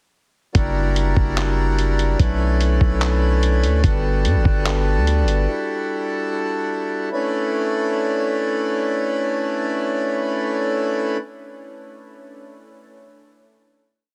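Atmospheric cloud-rap with an ethereal, melancholic mood, this short hip hop piece in B minor moves at 146 BPM in 4/4 with a half-time feel. A hand-pumped harmonium carries sustained chords from 0.6 seconds, its reedy, breathing, airy pad sitting up front and pumping against the sidechain, moving through F#7b9b13, Bm11, Gmaj9 and Em11 before settling on a final Bm11. Beneath it, a long sustained 808-style bass plays deep, sine-like sub-bass notes with a fast attack and mellow decay, following the kick with pitch slides until 5.5 seconds. A lo-fi sampler-style drum kit lays down a sparse half-time beat of handclaps, hi-hat and a thumpy kick, muffled and compressed, and drops away at 5.4 seconds. After the drums and bass fall silent, the harmonium carries on alone through Em11 and then holds the closing Bm11 until 11.2 seconds. The sound is dry and close, squeezed into a heavily compressed, radio-like finish.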